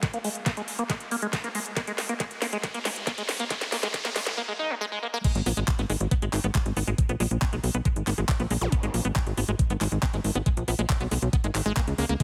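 This driving, hypnotic psychedelic trance excerpt opens on a build-up, with a knocking electronic kick and a layered garage kit of cracking snare, metallic hi-hats, handclaps and crash cymbal running through a drum fill while a riser climbs in the background. A squelchy, resonant acid bass riff with chorus, delay and sidechain pumping enters almost at once, under a filter sweep until the drop at 5.2 seconds. There, at 138 BPM in G# minor, tuned to A4 = 444 Hz, a tight, punchy sawtooth sequencer bass with ring modulation and a plucked filter arrives at 5.4 seconds and drives the low end up front. A brief electronic zap flickers at 8.6 seconds. The tape-tinged drums sit forward, with their hats, snare and cymbals thinned by high-pass filtering, and the whole mix has a heavily compressed, radio-like sound with light digital reverb.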